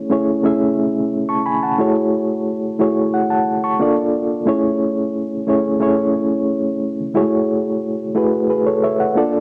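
A home cassette recording with light reverb and a digital ambience gives this short soul fragment a lived-in, intimate sound. A lone reed electric piano sits up front, heard through its built-in speakers, its reedy, worn tone slightly out of tune yet clean, with a fast tremolo and a cassette-tape colouring. The mood is warm and smooth, at an unhurried 89 BPM in a straight 4/4 feel. The harmony moves from Amaj7 to F#m9, touches Bbmaj7 at 3.8 seconds, and returns to Amaj7 and F#m9 before the clip ends at 9.4 seconds. The playing spans from G#3 up to C#6, cut from a longer piece.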